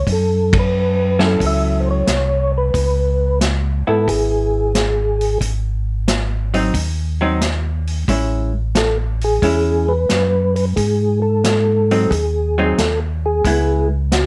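Late-night and bluesy, this soul jazz organ trio excerpt swings easily as a soft, flute-like tonewheel organ with percussive attack and slow rotary speaker carries the melody, while a second, round and dark organ voice with key click holds down the bass. A vintage acoustic drum kit with dark cymbals and a punchy kick joins almost at once, and the band hits an accent at 0.4 seconds. A clean, compressed hollow-body electric guitar enters at 1.2 seconds to accompany up front through a minor-key progression, all set in light reverb.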